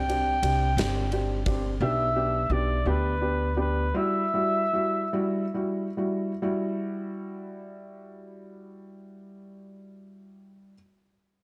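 Aching and dramatic, this short cut from a longer six-eight pop ballad in E minor moves at a slow 44-58 BPM in dotted quarters and eases back between 1.8 and 6.4 seconds. A clear, vintage-toned flugelhorn carries the solo melody up front with vibrato, singing over a Csus2, G/B and Emadd9 progression until it falls silent at 5.5 seconds. Beneath it, a pizzicato upright bass with steel strings adds woody low notes before dropping away, while a huge arena drum kit with a punchy kick, bright cymbals and a medium-tuned snare sounds only briefly, ending at 1.6 seconds. A dark, mellow upright piano, intimate and slightly detuned with audible action noise, plays the accompaniment and continues by itself until 10.7 seconds. Light reverb and studio ambience frame a dark, warm production.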